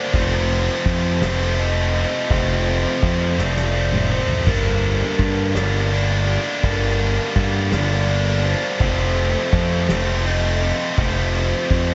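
A dreamy, reverb-soaked mix with a dark, rolled-off top opens this melancholic, cathartic post-rock excerpt, cut from a longer piece and moving at a slow 55 BPM in 6/8 with a straight feel. Up front, a tight, bright distorted guitar, double-tracked and picked, plays a riff, while a fuzz-laden picked electric bass adds punchy overdriven weight beneath it. A mellow vibraphone, struck with soft mallets and its motor off, rings out metallic arpeggios through a delay. Further back, a distant, roomy drum kit played with soft mallets keeps dark cymbals, a medium-tuned snare, toms and a punchy kick in the background, breaking into a fill from 3.4 to 4.5 seconds. The harmony moves from F7 to Gm at 4.5 seconds and returns to F7 at 8.8 seconds, all within a single section.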